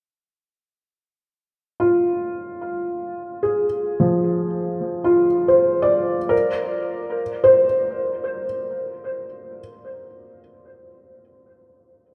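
A plate reverb with a long, wet tail and an echo-heavy mix surround this short ambient excerpt, giving it a soft, floating space. Unfolding in free time in Bb mixolydian, the piece feels peaceful and warm. A felt-muted upright piano plays solo, entering at 1.8 s and continuing to the end at 12.1 s within a range from F3 to D5. Its tone is muted, boxy and intimate, sitting up front while an analog delay on the piano adds trailing repeats. The harmony rests on Fm before shifting to Bbadd9 at 6.3 s.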